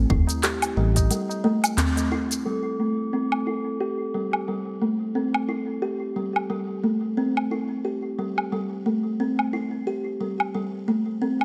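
Earthy and mystical, this short organic downtempo clip moves at 89 BPM in A minor with a lightly swung sixteenth-note feel, resting on an Am7 chord. A woody, hollow-toned kalimba plays soft, fingertip-plucked arpeggios up front throughout, its tone filtered and trailed by delay, while a bronze singing bowl rings with slow, metallic beating in the background. A smooth, dark synth bass with gliding portamento sounds only for the first 1.1 seconds alongside a tight electronic kick set back in the mix, and a high-tuned, close tabla adds ringing acoustic strokes until 2.1 seconds. An overdriven organic electronic kit with crisp hi-hats, handclaps, shaker and woodblock sits up front from 0.3 seconds onward, and the band hits an accent between 1.8 and 2.1 seconds before a new section begins at 2.5 seconds. Light studio reverb gives the whole a gentle sense of space.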